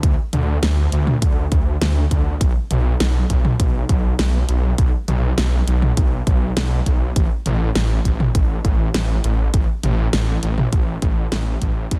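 A dry, dense and heavily limited sound frames this moody, nocturnal synthwave excerpt at 101 BPM in straight 4/4, with a fade-out from 10.3 to 12.0 seconds. A thick, detuned sawtooth bass sits up front, its saturated, chorused unison tone lush and sustained with a fast attack, while a punchy electronic kick is also placed prominently. A layered, produced pop kit adds hi-hat, toms and a fat snare further back, and all three parts play throughout the 12 seconds.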